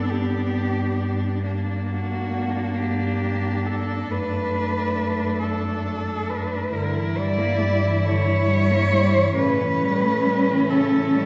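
A warm, expressive cello sings the melody up front, bowed with vibrato and portamento, in this serene classical piece for cello ensemble, taken in 6/8 at 45 BPM in dotted quarters with a rubato feel in D major. Beneath it, a distant, smooth cello holds an even second line, a third cello adds soft-attack accompaniment with its own portamento, and a focused bass cello sits up front, the three lower voices sharing a rich tone and all four players bowing with vibrato. The harmony moves from G through Gm, D/F#, Em7b5/G to A7, and a wet recital-hall reverb of 1.7 s surrounds this 11.3-second fragment of a longer work.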